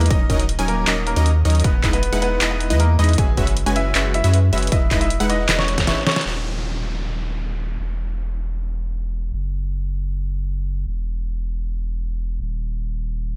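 A euphoric, bright future bass drop in E lydian at 156 BPM, with a half-time feel, opens the excerpt. A brilliant concert grand piano melody with tape echo and sidechain pumping rides over an airy, detuned supersaw stab riff through a low-pass filter, a very quiet, lush unison pluck arpeggio, a punchy electronic kick and a dubstep kit of handclaps, hi-hat and a deep snare, moving through D#m7, Emaj7 and F#9sus4. A drum fill from 5.5 s leads to a band accent at 6.2 s, after which the thick, saturated sub bass continues with only an electronic downlifter until 13.4 s, the sound dry and close throughout.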